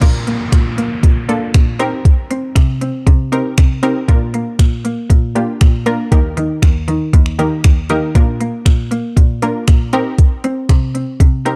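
Digital ambience and a dark, warm production surround this summery, upbeat dance-pop excerpt in Bb major at 118 BPM, cut from a longer piece. A smooth, produced R&B drum kit sits up front with a soft kick, finger snaps, hi-hat and crash cymbal. A single close, bowed cello with vibrato carries the bass line, and punchy, detuned sawtooth chord stabs with chorus fill in the harmony, both pumping against the sidechain. An electronic downlifter sounds from 0.1 to 4.1 seconds as the chords move between Bb, Cm7 and Eb.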